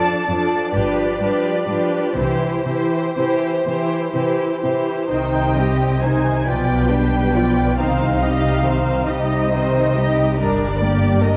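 Lyrical and tender, this slow, rubato classical movement for string orchestra in 6/8, cut from a longer piece, sets a lush symphonic violin section's melody over an up-front studio violin section's second line and close, soft-attack viola accompaniment, with a smooth-topped cello section entering at 0.3 s and an up-front double bass section at 0.7 s, every section muted and veiled with vibrato, before the harmony turns to the minor at 5.1 s, all bathed in a scoring stage's wet reverb and the warbling pitch drift of worn cassette tape.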